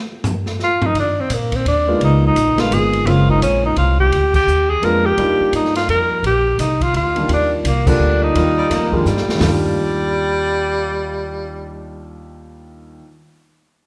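Sophisticated and playful, this small-group swing and bop fragment moves in a swinging three, with a breathy tenor saxophone carrying the melody up front in a whispered, intimate subtone full of vibrato and scooped notes. An open jazz drum kit with dark cymbals and a boomy kick, a woody pizzicato upright bass and a smooth, vintage grand piano fill out the group, which hits shared accents before a drum fill ends at 9.4 seconds. A warm, distant baritone saxophone enters as a second line at 8.6 seconds, all within a roomy recital-hall reverb.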